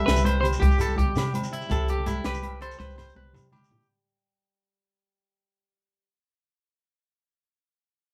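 A boxy, thumb-plucked flamenco guitar and a twangy, slightly broken-up electric guitar playing arpeggios open this sunny, danceable highlife excerpt in C major at 110 BPM in a straight 12/8. They are joined at once by a dark, picked clean electric guitar melody bathed in spring reverb, a round hollow-body fingered bass, and a dry, punchy cocktail drum kit with a high-tuned snare, while a grainy shekere joins in and thick-skinned congas and ringing agogo bells sit in the background. The whole band plays live in a moderate studio room and fades from the start, with a drum fill from 2.8 seconds before the flamenco guitar carries on alone until 6.1 seconds.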